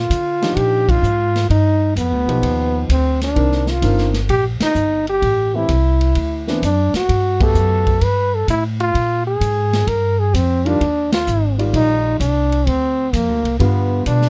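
Close, detailed and nearly dry, this sophisticated, playful slice of small-group swing and bop in Eb major swings at 129 BPM, with a clear, forceful trombone carrying the melody up front with light vibrato and scooped notes over a woody, thumpy pizzicato upright bass on gut strings, a warm upright piano accompanying from 0.4 seconds, and a vintage drum kit with a punchy kick and rolled-off top on hi-hat, ride and snare, the band landing shared accents at 0.8, 4.5, 7.3 and 11.0 seconds.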